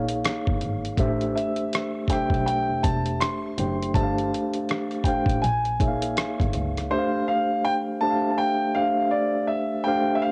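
Smooth and introspective, this swung neo-soul R&B fragment pairs a mellow tine electric piano with cassette-tape grit, a bowed double bass with vibrato and portamento that drops out at 6.8 seconds along with the gritty, compressed sampler-style kit with its thumpy kick, hi-hat and rim click, while an open concert grand piano with long sustain carries the melody from 1.4 seconds over chords moving from Bbm7 to Dm11, all in a small home room captured on cassette.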